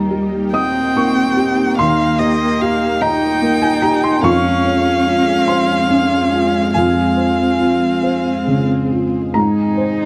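A felt-muted upright piano, a rich cello and an analog string pad open together in this intimate, hopeful neoclassical excerpt, drifting at a rubato 48 beats per minute in 6/8. The piano, thick with felt and set up front, spans the deep low register up into the high treble with a soft, mellow, dark tone, while the cello sings a second line with vibrato, gentle attacks and expressive portamento. At 0.5 seconds a single bowed violin enters close and focused, carrying the melody high with vibrato until 8.7 seconds. The silky string pad sits in the background, holding sustained chords with a slow attack, a sub octave, a moving notch and ensemble chorus. Harmony moves from Eb to Dbmaj7 over F and settles on Ab near the end, all within a moderate large-studio reverb and a dusky, warm production.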